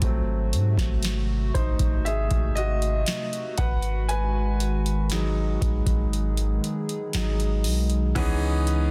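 A clear grand piano plays solo from 0.0 to 8.2 seconds in this sensual, late-night contemporary R&B excerpt, moving through G#7b9 and G#m7 to C#m9. Beneath it, a long, sine-based 808-style bass and a booming analog drum machine sit up front; the drums have a crisp snare, metallic hats and a tape-warm, small-room character. A hollow, flute-like pad holds sustained chords with chorus and sidechain pumping, all set in digital ambience with a dense, heavily limited modern master.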